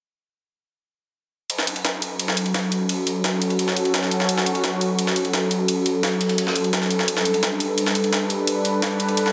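Soaked in a lush plate reverb and squeezed into a dense, heavily limited modern master, this short excerpt of dark, technical drum and bass feels mechanical and tense. Everything starts together at 1.5 seconds. A sawtooth pad sits up front with sustained, detuned chords, its slow attack, long release and chorus giving it an evolving, resonant, bright shimmer shaped by a filter swell. Alongside it, a jungle sampler-style kit brings a gritty, pitched-up, compressed medium-tuned snare and a ride cymbal, overdriven and pushed forward, with the character of a large room around it. Layered electronic hi-hats add crisp, overdriven sparkle, carrying the tighter feel of a small room. The harmony rests on F#m before moving to G at 7.1 seconds, and the parts run until about 9.3 seconds.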